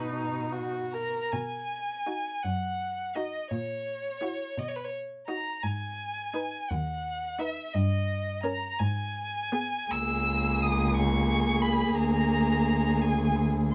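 A rich first violin with vibrato leads this elegiac, yearning slow movement for string quartet in B major, its smooth, even melody reaching up to E6 over a 6/8 pulse at 56 BPM with uneven beats and free rubato. Beneath it a warm, expressive viola supplies accompaniment with portamento, while a close, soft-attacked cello holds the bass up front, also sliding between notes. A dark, woody second violin adds a close inner line from 0.1 seconds as the harmony moves from B through G#m toward A#7/D under light reverb, in a passage cut from a longer piece.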